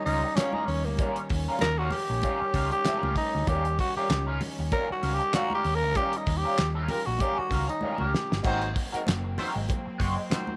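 A growling, raspy tenor saxophone sits up front with a breathy jazz-style solo over a gritty, playful funk groove at 97 BPM in Eb mixolydian, swung on the sixteenths and moving from Eb9 to Ab9 at 8.4 seconds. Beneath it, a cloth-damped, thuddy drum kit with a fat snare, handclaps and dark cymbals joins a round, hollow-body fingered bass, a slightly broken-up picked electric guitar with wah and lush chorus, and bright, thin-skinned congas, while a soft, floating sul tasto string section holds chords in the background. A band accent and a drum fill close out the sax solo, and a smooth horn section with light vibrato enters at 6.9 seconds to carry a second line through the end of this excerpt cut from a longer piece, all in light reverb.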